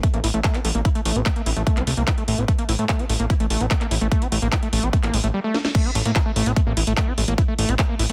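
A squelchy, gritty acid bass riff, distorted and treated with digital delay and sidechain pumping, opens this hypnotic psychedelic trance excerpt at 147 BPM in A phrygian, over a punchy, up-front electronic kick, a techno kit of cracking snare, metallic hi-hats, handclaps and crash cymbal, and a fat, detuned sawtooth analog bass on an A5 chord; the acid line's filter sweeps until a drum fill at 5.5 seconds leads into the drop at 5.7 seconds, and the whole is set nearly dry in a dense, heavily limited modern master.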